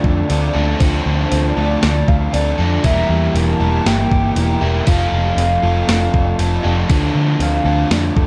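A straight 4/4 pulse at 118 BPM comes from a crisp, sampler-style 8-bit drum machine, its thumpy kick, medium-tuned snare and hi-hat sitting up front with a small-room character. This hazy, melancholic slice of shoegaze and dream pop in D minor runs 8.3 seconds, cut from a longer piece and moving through Dm7, Edim, F6 and back to Dm7. A dark, round, foam-muted vintage bass plays punchy and forward beneath two overdriven riff guitars: a crunchy one washed in reverse reverb, and a semi-hollow one with a hollow-body glow and lush chorus. A bright, compressed clean guitar, recorded direct, threads very quiet arpeggios through the middle. On top, a soft, pure sine lead carries the melody with vibrato, chorus and slapback echo, all under a light reverb.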